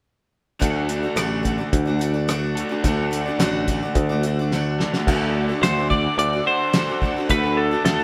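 Folk rock with a heartland rock drive, this hopeful excerpt moves at a steady, straight four-beat pace and sounds like a band playing live together in a moderately reverberant stone room. From 0.6 seconds a picked steel-string acoustic guitar picks out accompaniment with audible finger squeaks, while a raw, double-tracked garage guitar with overdrive carries a riff and a growly, up-front picked electric bass anchors the low end. The cloth-damped drum kit sounds dry and thuddy, with a fat snare, tight kick, rim clicks, hi-hat and dark crash cymbals, and a drum fill leads into a new section at 5.1 seconds. There a very quiet musette accordion adds shimmering, reedy sustained chords, and at 5.6 seconds a bright, twangy twelve-string electric guitar takes the melody up front, clean and compressed with a slapback echo.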